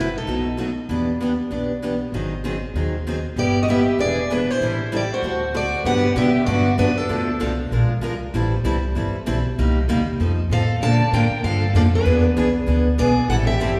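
A picked steel-string acoustic guitar carries the melody with a bright tone and faint finger squeak, joined by a distant, smoothly bowed violin with vibrato on a second line; the two play in phrases, resting between 0.6 and 3.4 seconds and again until 10.5 seconds. Underneath, a boxy, parlour-style second guitar sits up front as accompaniment, and a woody, thumpy pizzicato upright bass with gut strings anchors the lively, charming jazz manouche swing as it moves through rich seventh and extended chords. The excerpt rings out in a wet, spacious church or concert-hall reverb.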